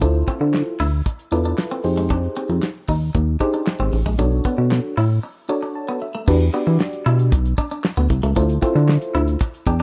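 A rough home demo with small-room ambience frames this late-night, funky slice of early-eighties boogie funk at 115 BPM in E minor, where an up-front, glossy chorused synth bass with a filter pluck and a dry, damped 70s drum kit with fat snare, tight kick, handclaps and dark cymbals drive beneath a full-bodied FM electric piano with tremolo and a bright, twangy clean electric guitar riff with subtle chorus, the groove breaking at 5.2 s for an electric piano fill before settling onto Em9 at 6.3 s.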